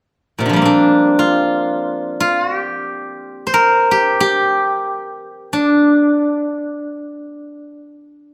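In free time and the G yu mode, this brief excerpt of Chinese traditional solo plucked-string music features a silvery, ringing steel-string zither played with fingerpicks, heard up front from 0.4 to 8.3 seconds across a span from Bb2 to C5, its elegant, longing phrases settling into a moderate recital-hall reverb.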